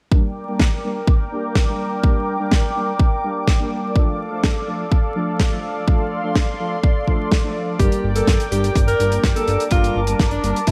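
Italo disco excerpt at 125 BPM in G minor, melodramatic and danceable, built over a Gm to Dm to Gm progression: a lush, airy unison pad holds sustained chords with chorus and phaser, while brassy analog synth brass plays stabs with a filter sweep, chorus and digital delay. A punchy, up-front electronic kick drives the groove from the start, joined at 0.6 seconds by a dry, damped 70s kit on hi-hat and snare. At 7.8 seconds a breathy alto saxophone enters with a vibrato-laden pop melody through digital delay, alongside a fat, tube-saturated analog bass, all set in light reverb with a layer of vinyl crackle.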